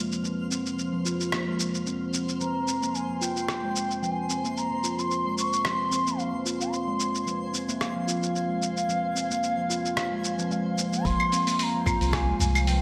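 Organic downtempo in F minor at 111 BPM, this mystical, warm cut from a longer piece moves with a gentle 16th-note swing over a sustained F minor chord. A dark, detuned analog pad with chorus and sidechain pumping holds the harmony under a filter sweep, while a twinkling granular texture adds sparkling octave-up shimmer in its own reverb. A round, ringing steel tongue drum plays meditative arpeggios through a low-pass filter and delay, and a gritty, tape-warm sampler-style kit of claves, hi-hat, rim click and shaker sits up front. At 2.4 seconds a mellow bansuri enters with a pure bamboo tone and vibrato, its rolled-off highs roughened by 12-bit sampler grit and trailed by delay. Near the end, a round sine sub bass arrives at 11.0 seconds, followed by an overdriven electronic kick at 11.1 seconds and a small, dry udu in the background at 11.9 seconds, all framed by a wet plate reverb and bright 1980s-style digital production.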